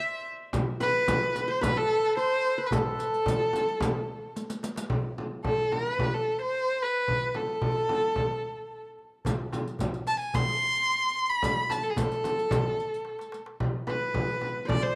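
A light reverb and small-room ambience frame this hypnotic, melancholic Arabic maqam ensemble piece in A minor, a short section cut from a longer performance at 110 BPM in a straight 4/4. A single bowed violin carries the melody up front with a rich, expressive tone, its vibrato and portamento shaping lines that range from G#4 to C6. Beneath it, a plectrum-plucked qanun adds a bright-edged second line from its triple strings, dropping out at 4.3 seconds and returning at 13.9 seconds. The percussion rests on a deep, large frame drum played with hard hands, a clay-shell darbuka with natural skin, and a riq whose bright jingles come and go, rejoining at 9.3 seconds. Drum fills mark the turns between sections, keeping the hypnotic pulse moving under the violin's mournful singing.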